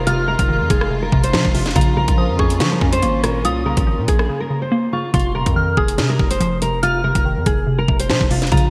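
A half-time drill groove at 142 BPM in F minor drives this ominous hip hop fragment: an electronic kit sits up front with a knocking kick, sharp snare and metallic hats under gated reverb, while a distorted, saturated 808-style bass adds heavy weight. A fingerpicked nylon-string guitar carries the melody with a full-bodied classical tone through analog chorus, a soft FM synth bell traces a pure second line high above with phaser and delay, and a hollow, bouncy square pluck with ring modulation fills the accompaniment. Dark, bowed studio strings hold sustained chords in the background until 5.1 s, through a break that begins at 4.3 s, and the mix sits in a lush hall with bright 1980s-style digital sheen and vinyl crackle.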